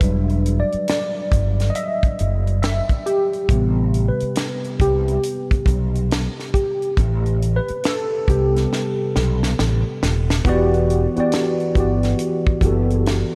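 A tine electric piano leads this late-night neo-soul excerpt, taking a solo from the start alongside fretless electric bass and a tight funk drum kit. The tempo is a slow 69 BPM in 4/4 with a swung sixteenth-note feel, and the harmony moves from Em9 to Am9 before settling back on Em9 at 10.4 seconds. The piano sounds worn and slightly out of tune yet clean, played through a combo amp with analog chorus, and it spans a broad register up front in the mix. The fretless bass is bright, direct and amped, colored by ensemble chorus, and sits low and close. The acoustic kit, recorded naturally in a small room, pairs a high-tuned snare with a tight kick and hi-hat, and it plays a fill from 8.7 to 10.4 seconds. Light reverb gives the whole sultry groove a touch of space.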